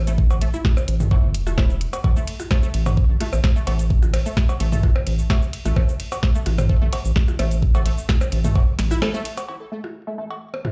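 Minimal techno at 129 BPM, clinical and hypnotic, where a knocking, up-front electronic kick anchors a round, deep analog bass that pumps to the sidechain, while a squelchy, nasal blip pluck riff with subtle chorus and tape echo rides above overdriven drum-machine hats, ride, shaker and crisp snare, and tape-warm cowbell, blips and toms with delay, all in a large studio reverb, before a brief break at 9.0 s and a band accent lead into a closing section at 9.5 s of this excerpt from a longer piece.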